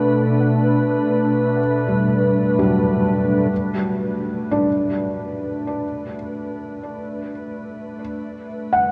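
A glassy, ethereal FM pad sits up front in this serene, spacious ambient passage, holding slow-blooming sustained chords with ensemble chorus, moving from Gmaj7/B to a rootless Gsus2 at 3.5 seconds in free time. A soft, felt-muted upright piano traces intimate, dark arpeggios with short sustain, audible action noise and a delay, while a very quiet analog drone on A3 hums beneath with evolving, vintage sawtooth and pulse-wave tones. The whole excerpt is bathed in a wet cathedral reverb and the warbling pitch drift of worn cassette tape, cut from a longer piece.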